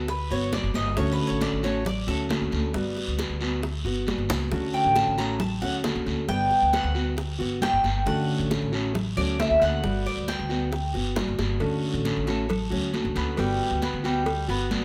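A fingerpicked, full-bodied jumbo steel-string guitar and a growly, woody upright bass sit up front from the first moment of this sunny, danceable stretch of Cuban son and guajira at 135 BPM in D major, while a metallic, double-strung Cuban tres solos over alternating Gmaj7 and Dmaj7 chords until 11.6 seconds, bright high-tuned congas and tight bongos with cowbell stay in the background, a raspy guiro sounds distant in a moderately reverberant large studio, and drum fills arrive at 4.1 and 11.4 seconds.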